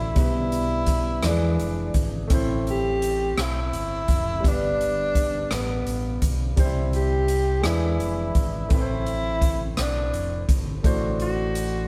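This slow gospel passage in 6/8 feels soulful and uplifting, a short stretch cut from a longer piece. A breathy tenor saxophone carries the melody up front, singing with vibrato and scooped notes in a jazz-inflected solo voice. Beneath it, a warm baby grand piano supplies natural, long-sustaining accompaniment, while a fingered electric bass adds a dark, round and punchy low end with an amped edge. From 0.2 s a big-band drum kit joins with an airy, polished sound, placing hi-hat, rim clicks and a punchy kick up front. The harmony moves through G/B, E7 and Am to G, then C, E7, Am and D7/A, and the whole band plays live together in a stone room whose moderate reverb lends a gentle halo.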